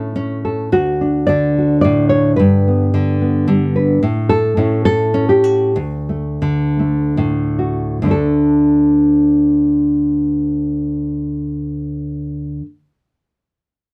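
A dark, full-bodied nylon-string guitar carries this gentle, warm folk passage alone, thumb-plucked and close up front with audible finger squeak, moving in a rubato 3/4 feel through A, D and G before slowing down between 4.0 and 8.0 seconds. A new section opens at 8.0 seconds on a D5, and the guitar continues until 12.7 seconds in this fragment cut from a longer piece. The sound is a dry, intimate 1970s-style studio recording touched by light reverb.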